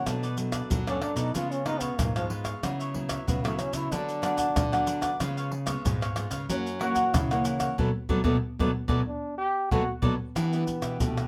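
A straight 4/4 samba-choro groove from tight surdo, pandeiro, tamborim and maracas sits up front under crisp picked cavaquinho, full-bodied fingerpicked nylon-string guitar chords and a second fingerpicked nylon-string guitar carrying the bass line with audible finger squeak, while a roomy, vibrato-laden jazz trombone enters at 0.9 s for a lively yet yearning solo over minor-key changes, with a band accent from 7.8 s in this short excerpt cut from a longer piece.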